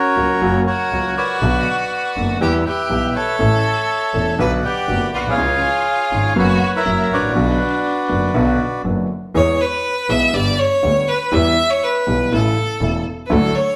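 A tense, dramatic tango excerpt in B minor opens at 0.0 seconds with a reedy, dark bandoneon carrying the melody up front while a biting, intense bowed violin sings a second line with vibrato, all in a rubato feel around 121 BPM. A woody, polished upright piano with long sustain and a smooth, distant bowed double bass fill out the harmony and low end in a wet stone room, the group playing live together. The bandoneon stops at 8.8 seconds, and from 9.3 seconds the bright violin takes over as soloist until the cut.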